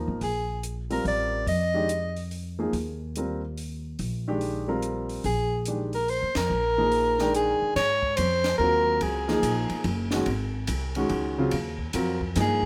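Modal jazz in 3/4 at 143 BPM, swung on the eighth notes, with an open, spiritual mood. A baby grand piano comps throughout, its intimate, natural tone carrying a touch of audible action noise, while a woody, growly upright bass played pizzicato sits up front beneath it. A warm soprano saxophone carries the melody with vibrato and a smooth top, set in plate reverb. The dry, compact cocktail drum kit pairs a punchy kick with a high-tuned snare and dark cymbals on hi-hat and ride, and the band hits an accent together at 6.3 s. The harmony rests on Bb7sus4 before moving to Ab9sus4 at 7.8 s, the players heard in a moderate large studio room in this brief passage cut from a longer piece.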